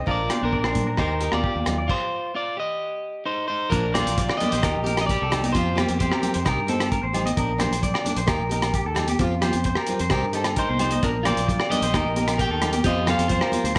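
An up-front, slightly broken-up electric guitar carries the melody with plate reverb, dropping out at 6.4 s and returning at 10.6 s, in this sunny, carefree highlife guitar band excerpt at 132 BPM in Bb major, where a bright, twangy lo-fi guitar through a small old amp picks spring-reverbed arpeggios, a round fingered electric bass holds the low end, a boxy picked swing-style acoustic guitar sits in the background, a muffled, gritty, cloth-damped drum kit with dark cymbals and a tight kick sounds close, ringing agogo bells and distant, high-tuned congas played with hard hands add percussion from further back, and the band makes a stop at 1.9 s.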